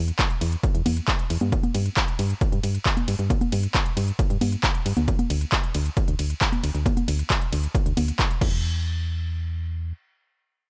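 A solid FM bass anchors this excerpt of uplifting trance, its round, dark digital tone pumping under sidechain compression while it moves between D2 and G2 from the very start to 9.9 s. The mood is emotional and euphoric, driven at 135 BPM in a straight 4/4 with tuning set to A4 = 441 Hz. A big-room dance kit of congas, crash and ride cymbals, handclaps and crisp hi-hats enters at 0.1 s, joined at 0.2 s by a punchy electronic kick drum up front, both layered and re-recorded in a small room. The opening stretch plays as a drop until 8.6 s; the drums fall away at 8.5 s, and the bass carries on briefly into a new section. The sound is close and dry, with very little reverb, cut from a longer piece.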